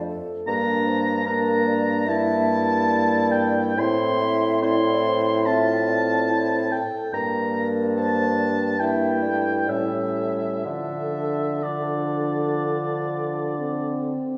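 Melancholic and elegiac, this slow, rubato romantic movement for wind quintet, cut from a longer piece, sets an airy, hollow flute melody in the background against an up-front oboe second line with light vibrato that enters at 0.5 s, while a clear clarinet and a mellow, distant French horn supply accompaniment and a warm, close-miked bassoon anchors the bass, the ensemble heard from further back in a wet recital-hall reverb as the harmony passes through A7 to settle on Dm at 10.7 s.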